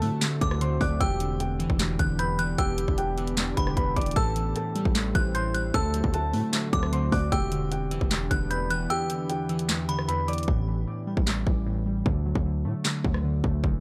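A half-time trap beat at 152 BPM in 4/4 drives this melancholic, brooding hip hop fragment in E minor, with an up-front electronic kit of hard-clipped kick, sharp snare, bright hi-hats, rim clicks and handclaps over a punchy, heavy 808-style bass. A mellow vintage baby grand piano carries the melody through tape echo, a tinkling FM synth bell traces a second line above it, glassy digital keys with chorus and a filter sweep supply low accompaniment, and a detuned sawtooth pad holds moody chords with reverb in the background. The kick drops out from 8.9 to 10.5 seconds, and from 10.5 seconds the piano, bell and pad fall away and the hi-hats go silent, leaving drums, keys and bass over a gritty, dry hardware sound as the chords move from Em7 and Am7 to A5 and D.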